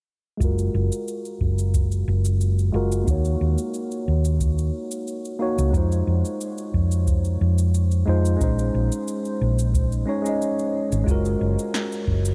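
A dreamy, reverb-soaked mix frames this wistful sunset chillout cut at 90 BPM, where a bright, bell-like tine electric piano with a low-pass filter sweep and diffuse ambient delay drifts over Gbmaj9, Ebm7, Fm7 and Bbm11 chords, a dark, round hollow-body electric bass sits up front, and a deep, tape-warm electronic kick joins a punchy, layered electronic shaker and snare, all playing from 0.4 seconds to the end of this excerpt from a longer piece.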